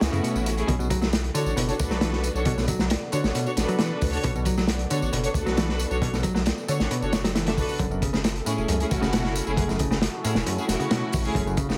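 A crunchy, saturated breakbeat drum kit sits up front with a punchy kick and a dark, rolled-off top, driving this gritty, funky breakbeat cut at 135 BPM in B minor, joined by a thick triangle-wave sub bass and a punchy picked electric bass riff carrying tape echo. Lush bowed string stabs with vibrato sound distant through 12-bit sampler grit, a low-pass filter and tape echo, while a moody, detuned sawtooth pad with chorus and sidechain pumping holds sustained chords in the background alongside an analog tambourine. A very quiet electronic swell opens the excerpt during a brief break, the harmony moving from F#m7 to Bm7 at 0.7 s and back to F#m7 at 7.8 s, all framed by a heavily compressed, radio-like sound with light reverb.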